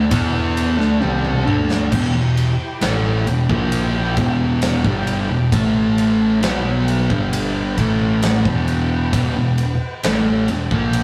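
A dark, up-front fuzz guitar grinds out a heavy, hypnotic riff at 66 BPM in E minor, joined by a very quiet second fuzz guitar and underpinned by round, overdriven picked bass, while a big rock drum kit with a punchy kick and rolled-off top plays a fill from 1.0 to 1.9 seconds before the groove settles on Em, and a fat, lightly overdriven tonewheel organ holds percussive chords through a slow rotary speaker in the background of this rough, roomy stoner-doom rehearsal recording.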